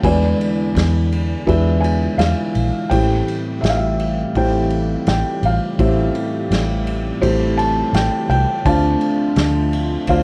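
A slow, straight four-beat pulse carries this intimate, heartfelt acoustic folk-pop ballad, a short passage cut from a longer piece, with the chords moving from E7 to Am7 at 2.9 seconds and on to Dm7 at 8.7 seconds. Up front, a felt-muted upright piano sings the melody across a broad span, its thick felt giving a soft, mellow tone with audible action noise and a vintage character. Beneath it, a vintage muted fingered electric bass supplies a round, foam-muted low end, while an unplugged drum kit played with bundle sticks adds a punchy kick, a medium-tuned snare and ride cymbal in a small-room sound. In the background, a dark analog pad built from detuned square, sawtooth and triangle waves with a sub octave holds sustained, full-bodied chords treated with chorus, its slow attack and long release deepening the moody atmosphere. Light reverb and a worn, warbling old-cassette quality with pitch drift give the recording a nostalgic, fragile patina.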